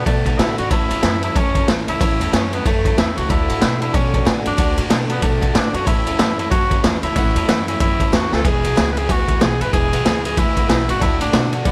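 A raspy, forceful tenor saxophone carries the melody over a rollicking, upbeat rockabilly groove at 186 BPM in A major, swung in 4/4, with a gritty, boomy garage drum kit up front, a woody, thumpy pizzicato upright bass, a full-bodied picked acoustic guitar and a jangly, detuned honky-tonk piano in the background under plate reverb, moving through D, A and E chords with a drum fill at 8.3 seconds in this short cut from a longer piece.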